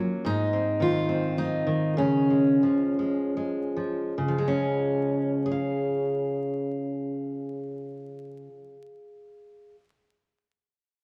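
A fingerpicked steel-string acoustic guitar plays alone and up front, its dark, full-bodied dreadnought tone carrying audible finger squeak, in this short pastoral, peaceful folk fragment in Db major and 3/4. The rubato pulse drifts between 70 and 110 BPM, slowing down from 0.3 to 4.2 seconds as the harmony moves from Ab to Dbadd9 before settling on Db at 4.2 seconds, where a new section begins. A large studio reverb and a layer of vinyl crackle surround the playing, lending the piece a hazy, nostalgic air.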